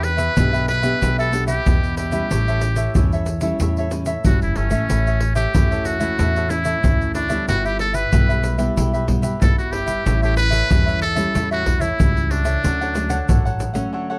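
This lively, sunny samba and choro excerpt at 93 BPM opens with the whole ensemble at once. A brilliant, buzzy trumpet with metal mute carries the jazz-style solo melody up front, breathy and thin with light vibrato, over crisp picked cavaquinho and warm, fingerpicked classical nylon-string guitar. Beneath them, a woody, dark pizzicato upright bass joins dry pandeiro, tube shaker and deep surdo played with hard hands, moving in a straight 4/4 through Em7, A7 and Em/G to a Dmaj7 at 12.6 seconds, all in light reverb with detailed microphones placed near; the trumpet stops at 13.6 seconds, and the cavaquinho and guitar carry on to 14.2 seconds.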